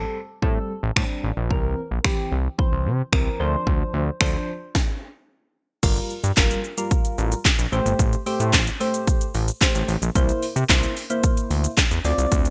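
A straight 4/4 pulse at 111 BPM drives this dance-pop excerpt, with a house drum kit entering at 0.4 seconds to stack a punchy kick, cracking snare, metallic hi-hats, handclaps, finger snaps, shaker and crash cymbal under gated reverb, sitting up front with a tape-like warmth. The mood is confident and driving, carried by a fat analog bass whose thick, detuned sawtooth tone, wave-folded grit and plucky filtered attack pump through sidechain compression. Above it, soft electric-piano-like synth keys supply a round, gentle, rather dark accompaniment, colored by chorus and phaser and breathing with the same sidechain pumping. The harmony moves through Am7, C7 and Dm7 before a stop from 4.8 to 5.8 seconds, then the second section opens on Gm7 and returns to Am7 and C7. Light digital ambience frames a bright production with a 1980s flavor, and the clip is cut from a longer piece.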